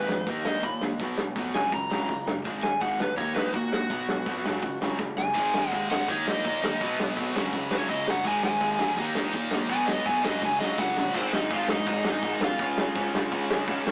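An overdriven semi-hollow guitar leads this rowdy, energetic punk rock excerpt, its hollow-bodied solo running until 11.2 seconds over a sludgy, overdriven guitar and a bright, tight distorted guitar picking riffs in the background. A growling picked bass sits low in the mix, while a loose, muffled indie drum kit with dark cymbals and a rolled-off top sits up front, and a double-tracked, high-gain guitar adds a heavy riff from 5.3 to 11.2 seconds. The rough rehearsal-room recording has a small-speaker sound, saturated tone and a moderate stone-room reverb.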